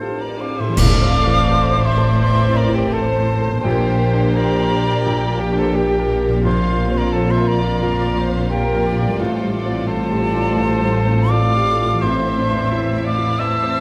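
A hollow, airy concert flute with vibrato and a crisp attack sits closest in this bittersweet, longing film-score excerpt, tracing a high second line beside a clear, smooth-topped solo clarinet and a muted violin section from the very start. Beneath them, an intimate baby grand piano with audible action noise supplies background accompaniment, while a very quiet concert harp rings out fingerpicked arpeggios. At 0.8 seconds the main melody arrives in a second con sordino violin section, veiled and lightly shaded with vibrato, joined by a lush muted viola section, a soft-attacked muted cello section and a close muted double bass section carrying the bass. Clash cymbals with a dark tone and a concert bass drum strike up front, close and dry, as a brief accent that ends by 2.2 seconds. The music moves in 4/4 at 86 BPM with a rubato feel, circling through chords such as Am, Gm/Bb and Bbsus2 before returning to Fadd9/A and Am. 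A moderate scoring-stage reverb gives the orchestra a gentle sense of space.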